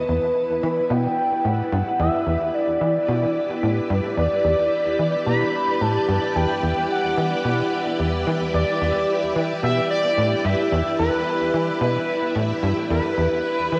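A tight, punchy sequencer bass drives a straight 4/4 pulse at 110 BPM, entering at 0.1 s with a nasal, sawtooth-and-square filter pluck that runs a riff low in the register, dressed in lush chorus, cassette tape and analog delay. This is expansive, hypnotic ambient space music in E minor, cut from a longer piece and opening on an Em7 chord. A full-ensemble string machine holds sustained chords up front with a vintage, full-bodied sound, its slow attack and sub octave thickened by ensemble chorus and tape character. Above it, an expressive synth lead sings a smooth, mellow melody between B4 and B5, its sawtooth and triangle tone touched by ring modulation, vibrato, subtle chorus and analog delay. Shimmer reverb glows across all three parts, and the whole home cassette recording sits in a wet spring reverb with a 2.2 s decay.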